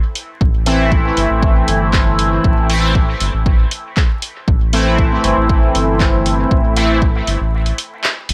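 A straight pulse from a punchy electronic kick drives this hypnotic, deep dub techno excerpt, with an analog drum machine adding handclaps and hi-hat from 0.2 seconds. A round, dark analog bass pumps with sidechain compression, while up-front stabs from a juicy, detuned polysynth carry a resonant filter sweep, ring modulation, chorus, phaser and dub echo. The sound sits in light reverb over vinyl crackle, and a brief break arrives at 7.5 seconds, after the kick and stabs have dropped out.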